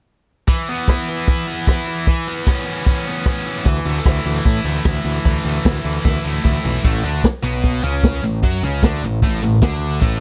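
A warm vintage drum kit with a punchy kick and a rolled-off top sits up front in this upbeat, carefree indie rock clip, driving a straight 4/4 at 151 BPM in A major with kick, snare, hi-hat, crash, rim click and toms, and a fill at 6.1 s. A bright, double-tracked high-gain guitar plays a distorted riff over E5, C#m7/E and Dsus2, joined at 3.7 s by a growling, round overdriven electric bass, before the music lands on A at 6.8 s. The sound is dry and close, like a 1970s studio recording, and the clip is cut from a longer piece.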